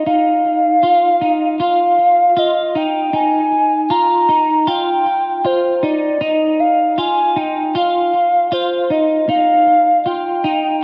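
Bathed in a long, wet plate reverb and a dark production, this short cut from a longer dream pop piece drifts at 78 BPM in Eb major, ethereal and blissful, resting on a single Ebsus2 chord. A woody, clarinet-like synth lead carries the melody up front, its soft attack, sustained tones and vibrato thickened by chorus and tape echo. Beneath it, a clean, fingered semi-hollow electric guitar plays arpeggios through ensemble chorus and tape echo for the full 10.8 seconds.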